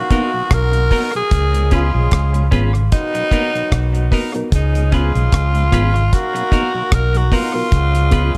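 A raspy, gritty tenor saxophone with scooped notes carries the melody up front through analog delay from the opening second, over a clear octave-doubled horn section and a very quiet, mellow tonewheel organ turning through a slow rotary speaker, soon joined by a compressed clean electric guitar, fast-tremolo stabs from a worn, slightly out-of-tune reed electric piano, and a dry, tight reggae drum kit of hi-hat, kick and rim click, while a round, foam-muted fingered bass arrives at 0.5 s in this hypnotic, laid-back roots reggae cut, which swings gently between Bmaj7 and Db7 in an echo-heavy mix.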